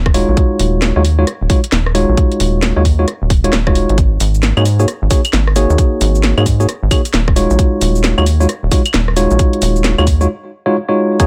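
A swung two-step garage groove drives this soulful, late-night excerpt: a tight, up-front electronic kick sits under a small-room garage kit of cracking snare, hats, rim click, cabasa and claves. A rubbery, nasal square-wave bass with a filter pluck bounces beneath clean tine electric piano stabs, which come through a combo amp and trail a digital delay. The bass drops out at 10.3 s for a short break where the piano and drums carry on alone.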